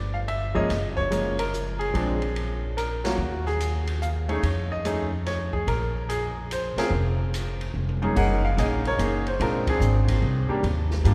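A clear, intimate baby grand piano carries the melody from the opening moment, joined by a woody, thumpy pizzicato upright bass, and an open jazz drum kit enters at 0.3 seconds. This is a late-night, smoky jazz piano trio excerpt in Bb minor, swinging in 3/4 at 145 BPM. The piano sits up front, with its action noise audible, and the steel-strung bass is also close and present. The acoustic kit, with dark cymbals, a medium-tuned snare and a boomy kick, sits lower in the mix, and the whole trio is heard together in a strong cathedral reverb from a church or concert hall. The band hits several accents together, and a drum fill at 7.7 seconds leads into a new passage at 8.2 seconds, where the harmony moves through Gb6 and Bb9 to Eb.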